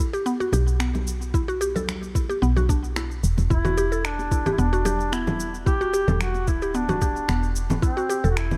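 Meditative and earthy, this organic downtempo piece moves at 111 BPM in E minor with a gentle 16th-note swing, and it is cut from a longer piece. A round, percussive mallet-like synth pluck opens with chorused, delayed arpeggios, joined almost at once by tape-warm electronic cabasa, finger snaps and congas in studio reverb, plus a bright, saturated conga layer sitting in the background. A woody, mellow FM bass enters at 0.5 seconds, up front with a sidechain pump, and a soft electronic kick arrives at 1.3 seconds. At 3.5 seconds, as the harmony settles on Em7, a duduk takes the solo melody in a folk style, its vibrato and scooped notes sounding distant and roomy through digital delay. The chords move to Am near the close, all set in a digital ambience.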